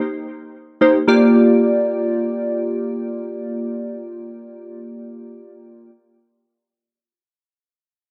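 A short fragment of joyful, breezy afrobeats in free time and B-flat major, opening as glassy digital keys enter alone at 0.8 seconds and play up front, moving from an E-flat sixth harmony to B-flat sixth, ranging from Bb3 to D5 until 5.9 seconds. Their sine-like tone has a fast attack, decaying notes and a filter sweep, colored by chorus and analog delay. Light reverb and a dark, warm production frame the keys.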